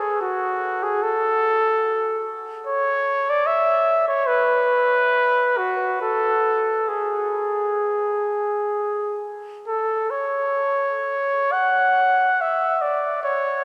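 A clear, up-front solo trumpet sings a lonely, yearning classical line in free, rubato time, its notes blooming into the long, wet reverb of a vast cathedral-like space across this 13.6-second excerpt cut from a longer piece.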